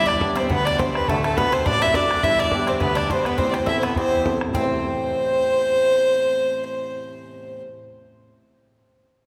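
A lush church reverb with a 2.8-second decay surrounds this short, driving Celtic reel, cut from a longer piece and set in A minor at 207 BPM with a light swing on the eighth notes. Up front, a single fiddle carries the melody with a rich, earthy tone, light vibrato and an airy bow, sitting close and clearly above the other parts. Beneath it, an Irish bouzouki picks a second line on double strings with an acoustic, metallic ring. A dark upright piano fills out the accompaniment across a broad range with a mellow, woody and slightly detuned sound. A damped, tight bodhran, close and dry, drives the rhythm until about 4.7 seconds, after which fiddle, bouzouki and piano carry on, while the harmony moves through G, D, G and A minor with an added ninth before settling on A minor, lending the lively tune its shadowy, restless edge.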